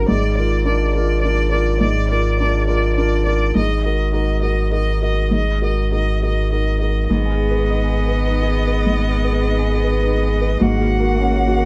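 In a triple metre played with rubato freedom, this fragile, longing piece of neoclassical piano and strings is cut from a longer work. A felt-muted upright piano carries the accompaniment, its soft, mellow, intimate tone colored by audible action noise. Beneath it, a pure sine sub bass sits up front, deep, clean and sustained on a single low note. Above them, a bowed solo violin sings the melody in a high register, rich and smooth with vibrato but heard from a distance. At 7.1 seconds, a close, bowed solo cello adds an even second line, and a concert harp enters with thumb-plucked arpeggios that ring in the background with a slapback echo. Light reverb and a dark, warm production give the music a gentle, yearning glow.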